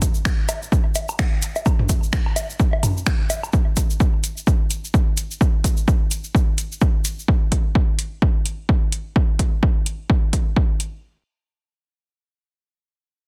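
A punchy, overdriven electronic kick drum sits up front in this cool, quirky minimal techno piece at 128 BPM with 58% swing on 16ths, joined by a booming analog drum machine with finger snaps, metallic hi-hats and a softly clipped snare, a grainy, bright tube shaker that stops at 7.3 seconds, and tape-warm electronic woodblock and toms with digital delay from 0.5 to 3.5 seconds, set in digital ambience with a dense, heavily limited modern master.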